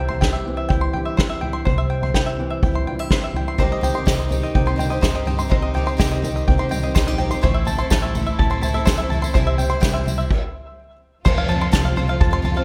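This hopeful indie folk excerpt at 125 BPM opens with a fingerpicked archtop guitar, a bright, twangy banjo playing arpeggios through delay, and a woody pizzicato upright bass, while a roomy soft-mallet drum kit with a punchy kick sits up front. A shimmering, octave-doubled twelve-string guitar joins at 3.6 seconds, with a jingly tambourine following just after. At 7.4 seconds the archtop gives way to lush bowed symphonic strings in the background as the chords move from C through C minor and A minor toward F. The arrangement builds under a bright 1980s-style digital production with plate reverb, pausing for a brief stop before a very quiet, crisp group handclap near the close.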